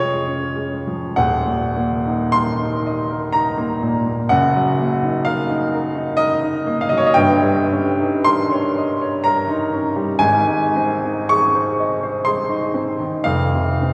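In a slow, rubato 3/4 that drifts between 48 and 65 BPM, this romantic classical nocturne unfolds as a short passage cut from a longer piece, serene and nostalgic in mood. A solo upright piano carries everything from 0.0 to 13.9 seconds, spanning a range from Eb1 up to Db6, its tone woody and natural and placed up front. The harmony moves from Db over F through shadings of E-flat minor before an Eb7 over G settles the music into A-flat major at 7.1 seconds, arriving on an Ab chord at 10.2 seconds and closing on an open F fifth. A wet church reverb with a long 3.5-second tail surrounds the instrument, blended with a small room ambience, so the close, intimate piano sits within a spacious, glowing halo. Tuned slightly high at A4 = 441 Hz, the recording feels gentle and reflective, like a quiet memory held in a large stone space.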